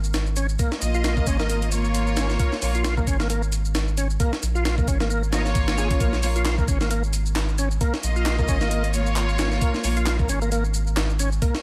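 A saturated, triangle-toned sub bass and a sampler-style breakbeat kit with a thumpy kick and high-tuned snare open this energetic, raw breakbeat cut at 133 BPM in Bb minor, with overdriven electronic shaker and handclaps layered beneath and a 56% swing on the 16ths. At 0.4 seconds a gritty tonewheel organ riff arrives with chorus vibrato, slow rotary speaker and tape echo, and from 0.8 seconds a rich, earthy studio string section adds bowed stabs with light vibrato and tape echo until 10.0 seconds. The mix is close and dry, with the pitched-up, compressed drums and deep bass up front over a single Bbm chord.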